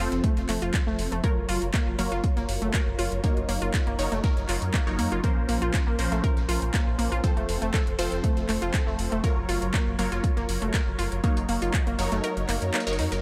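Cut from a longer piece, this emotional, driving progressive house passage at 120 BPM pairs punchy detuned supersaw stabs, filter-swept and washed in phaser and dub echo, with a round, dark analog bass pumping under the sidechain; a glassy, crystalline wavetable pluck arpeggio with chorus and echo; an overdriven deep house kit of handclaps and metallic hats; a gritty, sampler-style soul kit of hi-hat and snare tucked in the background; and a deep, up-front electronic kick that drops out at 12.2 seconds. All of it sits in a dry sound over chords moving from F through Gbmaj7, Ebm7/Gb and Bbmadd9.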